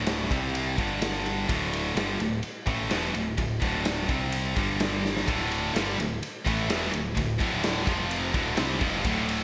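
A bright, 1980s-style digital production bathed in lush hall reverb carries this driving, heavy hard rock excerpt, where two bright high-gain electric guitars hammer out a riff over a growling, overdriven bass and a gritty, saturated garage drum kit with a punchy kick and gated reverb, a drum fill arriving at 5.0 seconds just before a third double-tracked guitar joins in the background at 5.3 seconds.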